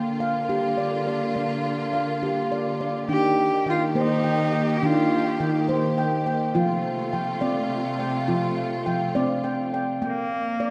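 Calm and gentle, this meditative world piece moves at 69 BPM in 6/8, in Bb major with A4 = 437 Hz, passing from Bb through Eb and F and back to Bb. A ringing, mellow handpan plays arpeggios throughout under soft fingertips on nitrided steel, trailed by a diffuse ambient delay, while a clear, lush studio string section holds bowed sustained chords until 10.0 s. A rich, focused solo cello carries a smooth-topped vibrato melody from 3.1 to 5.5 s and returns briefly at 10.1 s. The whole excerpt is set in a wet echo-chamber reverb with small-room ambience and is cut from a longer piece.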